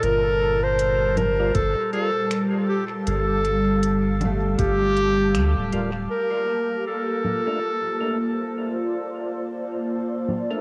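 A lightly reverberant home cassette recording carries this deep, spacious ambient dub fragment, cut from a longer piece and set to a swung sixteenth-note feel. Up front, a clear, classical-style clarinet sings the melody with dub echo over a mellow, detuned organ-like pad with ensemble chorus, while a round, soft sub bass holds the low end and a very quiet concert harp rings out fingerpicked arpeggios. An organic electronic kit of congas, finger snaps and smooth hi-hats, overdriven and touched with dub echo, carries the groove, joined at 1.4 s by percussive tonewheel organ stabs with key click and a slow rotary speaker in the background, and at 1.6 s by a faint overdriven electronic kick, with a band accent landing at 5.3 s.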